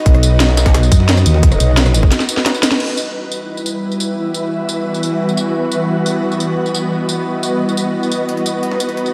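An ethereal, airy pad with ensemble chorus and pumping opens this dark, mechanical drum and bass excerpt at 175 BPM in E harmonic minor, joined at once by a tight, up-front electronic kick, a cracking layered kit with crash, rim click and tambourine, a gritty, tape-toned breakbeat layer in the background, and an aggressive, saturated growl bass that wobbles until 2.1 s. A drum fill from 2.1 s and a band accent at 2.7 s close the drop, and from 4.1 s a swarming, detuned granular drone settles over the pad and drums on E minor. The mix is soaked in lush hall reverb, giving it a dreamy haze.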